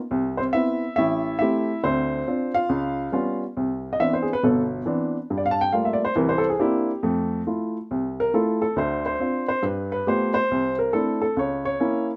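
Relaxed and swinging, this solo jazz excerpt at 138 BPM in C major features a lone upright piano, woody, polished and warm, sitting up front in a moderate club reverb as it moves through changes such as Cmaj7, Db7#11, Gm9 and C69, with its solo passage beginning at 3.6 seconds and running to the cut at 12.2 seconds.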